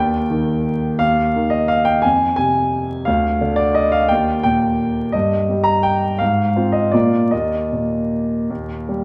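Graceful and sparkling, this nine-second fragment of a classical piano waltz in Eb major moves in 3/4 with a rubato feel, its tempo ranging between 149 and 184 BPM and its tuning set at A4 = 439 Hz. A solo grand piano, clear, natural and up front, spans D2 to Bb5, touching Fm at 2.0 seconds, Eb at 4.1 seconds and closing on Eb5 at 7.3 seconds. A wet recital-hall reverb and a vinyl crackle surround the instrument.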